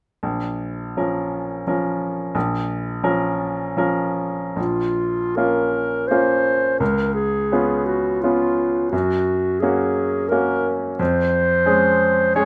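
In a rubato three-four metre, this solemn, yearning romantic classical excerpt opens with a brilliant, open-toned grand piano carrying the accompaniment alone before a soft-attacked, smooth-topped clarinet enters at 4.6 seconds to sing the melody up front, both instruments captured close and in detail with a touch of light reverb.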